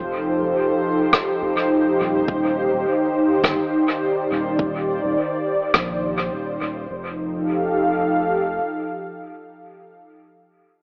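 A lightly swung ambient dub groove in 4/4 is carried by a deep, tape-warm electronic kick and a distant, roomy rim click with dub echo, which play together from 1.1 to 5.9 s in this short excerpt. Around them, an up-front, dark and smooth detuned sawtooth pad with chorus holds sustained chords moving from F7 to Ebmaj9, a round, soft sub bass rumbles beneath, and a bright, resonant texture bubbles through random filter steps until 6.9 s. Spring reverb and heavy echo give the peaceful, spacious mix an AM-radio character.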